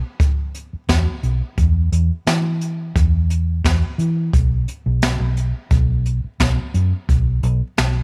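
A dry, close sound frames this smoky, brooding straight-eighth soul blues excerpt at 87 BPM in 4/4 with a light sixteenth-note swing, where an airy, polished brush drum kit with a high-tuned snare and boomy kick enters at 0.2 seconds and a dark, round, foam-muted fingered electric bass joins up front at 0.7 seconds, ranging from B1 to E3.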